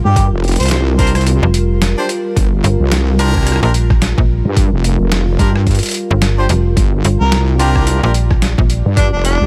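A heavy, detuned wobble bass with chorus sits up front in this playful, swaggering glitch hop excerpt, joined by a snappy, metallic FM slap bass over a swung 4/4 groove. Gritty, pitched-down sampler drums with an overdriven thumpy kick, hi-hat, rim click and snare drive the beat beneath a warbling, nostalgic lo-fi pad held on a Gm7 chord and pumping with sidechain. A distant, roomy harmonica with scooped notes and delay appears at 0.1 and returns at 7.2 seconds, while a tight, bright horn section fires delayed stabs from 1.0 seconds, all in a fairly dry mix.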